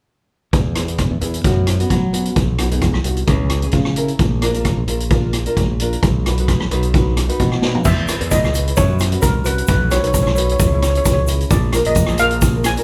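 Festive and bouncy, this calypso clip moves at 131 BPM in B major with a lightly swung sixteenth-note feel, cut from a longer piece. From 0.5 seconds a growly, punchy fingered electric bass and an up-front street-band drum kit, with its boomy kick, medium-tuned snare and dark cymbals, set the groove, joined at 0.8 seconds by a full-bodied, fingerpicked nylon-string guitar sitting lower in the mix. The harmony cycles through E, F#sus4, B, C#m and A#, and a drum fill at 7.6 seconds ushers in a new section. There a shimmering double-seconds steel pan, struck with hard rubber sticks, takes the melody, while a grainy egg shaker ticks along in the background. The band plays live together in one room, with a moderate large studio reverb lending the sound a sense of space.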